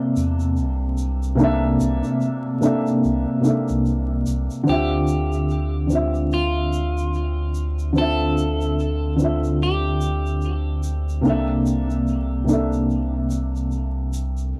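Brooding and smoky, this trip hop excerpt moves at a slow 73 BPM in D minor with a swung 16th-note feel, built on a soft, felt-muted upright piano carrying harmonic tremolo and cassette tape colour, a round sine sub bass with tube saturation, and a bright egg shaker played with hard hands. At 4.7 seconds, as the harmony shifts from C13 to Dm9, a twangy, slightly broken-up electric guitar enters with a picked, scooped melody dressed in subtle chorus and tape echo, dropping out at 10.8 seconds. The whole has a moderate booth ambience and the intimate grain of a home cassette recording with vinyl crackle.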